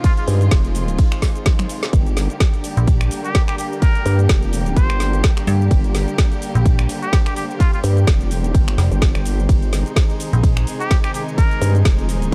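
Bouncy and gritty, this bass house excerpt at 127 BPM in G phrygian sets a punchy up-front kick and a garage kit with woody snare and metallic hats under a nasal, chorused vowel-sweep wobble bass and a metallic FM bass with tube saturation from 2.8 to 10.7 seconds, both pumping against the kick, while a bright, straight-muted jazz trumpet sings vibrato-laden phrases through digital delay over distant bowed strings and an airy, breathy pad in a dark, dry mix.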